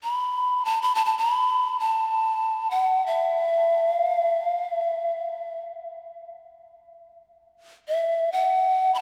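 A vast, echoing space surrounds this recording, its wet cathedral reverb trailing off over a 4.9 s decay. Within it, a lone bamboo pan flute plays solo from 0.0 to 9.0 s, close-miked and up front, moving between E5 and B5. Its tone is breathy, hollow and mellow, with a soft attack, a touch of chiff as notes begin, and gentle vibrato. This is calm, spacious world meditation music in free time, tuned to A4 = 444 Hz. The brief passage is cut from a longer piece and stays within one section throughout.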